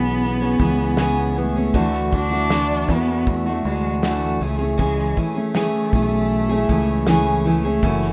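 A distant, bowed cello carries an expressive melody with vibrato and portamento, over a full-bodied, up-front picked jumbo acoustic guitar and a punchy fingered electric bass, in this sunny, heartfelt acoustic pop excerpt. From 0.2 seconds a loose indie drum kit with a tight kick, medium-tuned snare, shaker and rolled-off top joins, along with a jingly, bright tambourine far in the background. The harmony moves through C#m7, Dadd9 and Amaj7 in a moderate small room.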